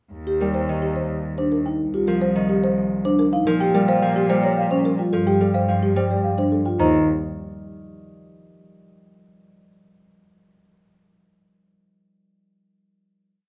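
A rich, bowed cello opens with long bass notes at 0.1 s, joined almost at once by a woody, rustic marimba carrying the melody, soft-mallet vibraphone arpeggios with a mellow ring, and a fingerpicked Celtic harp, each repeating a short cell in this propulsive, bright minimalist classical piece in Eb lydian at 108 BPM in 3/4. A delicate, bell-like celesta adds sweet arpeggios from 3.6 s, and the chords move from Eb through Cm7, Bb5 and G9sus4 before settling back on Eb for a final chord. The harp rings on alone until 8.5 s, all within a moderate large-studio reverb.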